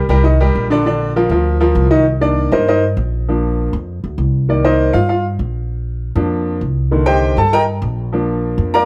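This salsa excerpt, a short slice of a longer piece, has a sunny, joyful mood in a straight 4/4 feel, tuned slightly high to A4 = 444 Hz. A clear baby grand piano and an upright bass play together from the very start through 8.9 seconds, both sitting up front in the mix. The bass is plucked pizzicato on steel strings, giving a woody, dark, growly and thumpy low end. The piano has a boxy character, moving from accompaniment into a solo that begins at 2.1 seconds and runs to the end. Underneath, the harmony alternates between Cm7 and Bb, and light reverb adds a touch of space around the pair.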